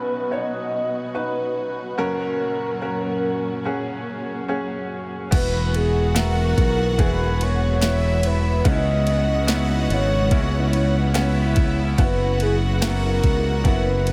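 A mellow, horn-like synth lead sounds from the very start of this hopeful pop ballad excerpt at a straight 72 BPM in 4/4, its round sawtooth tone carrying the melody with a soft attack, vibrato, a filter sweep, chorus and delay. Beneath it, a bright, woody upright piano with audible action noise and a slightly detuned, intimate character plays accompaniment, while a lush studio string section holds bowed chords in the background. At 5.3 seconds the arrangement fills out with a punchy, up-front fingered electric bass and a smooth, produced R&B drum kit with a soft kick, sharp snare, ride and crash cymbals. A very quiet picked jumbo acoustic guitar adds full-bodied arpeggios, and a clear, intense violin section plays a second line. The harmony moves from B to F#, then through Esus2, C#m7 and F#7sus4, and a huge ambient reverb soaks the whole mix in a dreamy, heartfelt haze.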